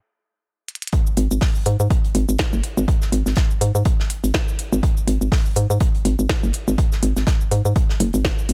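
The hollow, knocking FM bass stands out most, bouncy with a fast attack that decays, sitting up front with a sidechain pump as it moves between F#1 and G#2 from 1.2 seconds onward. This short cut from a longer minimal techno piece runs at 123 BPM in 4/4 with a swung sixteenth feel, and the mood is clinical and quirky. After a brief stop, a fill on the minimal click drum kit at 0.7 seconds brings in its tiny snare, cabasa and clicky, overdriven hats just before the drop at 0.9 seconds. There a punchy analog kick, re-recorded in a large room, lands up front, while a quieter acoustic studio kit adds a medium-tuned snare and filtered hi-hats that pump along with its filtered room sound. The mix is dry on reverb but heavy with echo.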